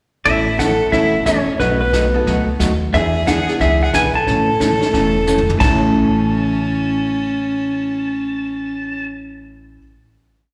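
Swinging and cheerful, this short western swing piece in A major moves at a brisk 179 BPM in 4/4 with a swung eighth-note feel. A clean, twangy electric lap steel carries a compressed slide melody built from motif-based sentence phrases. A clear, boxy fiddle sits up front beside it, playing a harmony line mostly in sixths with light vibrato and an airy bow. Beneath them, a hollow-body jazz guitar picks a dark four-to-the-bar rhythm, a woody pizzicato upright bass plays a two-beat root-and-fifth pattern with walk-ups, and a very quiet, metallic, jangly tack piano joins at 0.9 seconds with syncopated comping in close voicings. A roomy, distant brush kit with a punchy kick and dark cymbals keeps a backbeat with sweeps on the snare, then plays a fill from 5.3 seconds into the final chord at 5.6 seconds and drops out at 5.9 seconds. The whole piece has the feel of a live gig heard through a venue's PA, with recital-hall reverb and slapback echo on the steel, fiddle and guitar.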